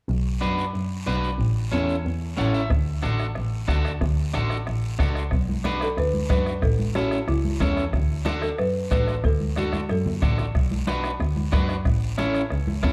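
This festive, joyful cumbia comes through with a dark production and light reverb, opening with a smooth, bowed double bass up front and a raspy, dry guiro, while a twangy, slightly broken-up electric guitar with spring reverb picks out the accompaniment. A brief clean guitar fill leads into a soft-beaten bombo, which joins at 2.7 s, and ringing congas enter in the background at 5.3 s as the piece moves into its second section. A rustic folk marimba with medium hard mallets then carries the melody until 10.4 s, with a drum fill adding lift near its close.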